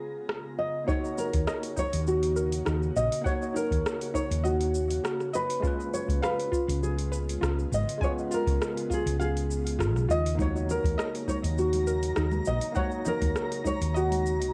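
Sunny and smooth, this sunset chillout excerpt moves at 101 BPM in 4/4 with a light sixteenth-note swing, shifting between C#7 and D#m7 chords. Up front, a dark, full-bodied nylon-string guitar carries the thumb-plucked melody through cassette tape and tape echo, joined from 1.3 seconds by a round, punchy fretless electric bass with a woody, hollow-body tone. Behind them sit a worn, slightly out-of-tune tine electric piano played through built-in speakers, an ethereal, airy pad with slow attack and ensemble chorus, and a soft, round pluck tracing arpeggios from 0.9 seconds. A dry, deep electronic kick drives the groove beneath an overdriven deep house kit of metallic hi-hats, rim clicks and shaker, and bright, thin-skinned congas appear in the background at 10.4 seconds. A twinkling granular texture adds an octave-up shimmer at the opening and again near the close, all wrapped in the character of a home cassette recording with moderate reverb.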